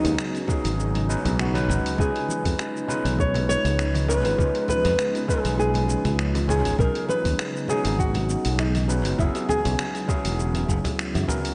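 A relaxed, sunny sunset chillout groove at 100 BPM features a dark, boxy flamenco guitar, thumb-plucked with audible finger squeak, carrying the melody in B lydian through a touch of delay. Beneath it, a barky, overdriven tine electric piano played through a combo amp adds echoing accompaniment, while a very quiet, ethereal pad sustains shimmering, detuned chords with an octave-up glow and a slow, granular bloom. A bright, growly fingered electric bass sits up front, and a gritty, compressed sampler-style kit of cabasa, finger snaps, hi-hat and toms swings lightly on the sixteenths alongside faint, vintage-toned bongos and congas. A soft, overdriven electronic kick joins at 0.5 s, as the harmony moves from B69 to C#9 and back before settling on F#9sus4. The whole mix is dreamy and soaked in plate reverb with a gentle digital ambience, and it is cut from a longer piece.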